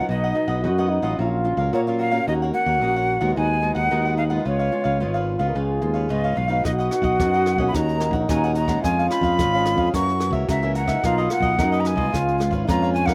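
A straight 4/4 samba-and-choro feel carries this yearning, nostalgic passage, where an airy jazz flute with vibrato sings the melody up front over a dark, whispered trombone second line, crisp picked cavaquinho and a small fingerpicked nylon-string guitar with finger squeak in the background, those three touched by slapback echo, while a punchy fingered electric bass anchors the low end and a brushed jazz drum kit with a boomy kick and rim clicks joins at 6.6 s, the whole set in a dry outdoor sound.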